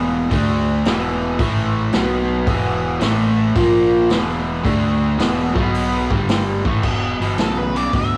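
A crunchy, double-tracked overdriven guitar riff opens this gritty, heavy excerpt of swung blues rock with a southern rock edge, joined at once by fingered electric bass and, from 0.3 seconds, a vintage drum kit with a punchy kick, medium-tuned snare and dark cymbals. At 110 BPM in E minor, the up-front riff cycles through power chords such as D5, E5, A5 and B5 before landing on E minor. At 7.4 seconds a dark octave-fuzz lead guitar breaks in high above for a brief solo, all captured as a rough rehearsal-room recording in a small, reverberant room.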